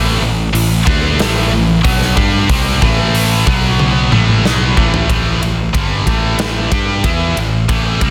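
A straight 4/4 pulse at 92 BPM drives this aggressive hard rock passage in A dorian, tuned to A4 = 445 Hz: an up-front, double-tracked, high-gain guitar riff with heavy distortion leads from the start over a growly, direct picked electric bass, a big-room acoustic drum kit with bright cymbals, a medium-tuned snare and a punchy kick joins at 0.6 s, and a drum fill from 3.8 s carries the chords from Am through B5 to A5 into a new section at 5.1 s, set in studio reverb within a dense, heavily limited modern master.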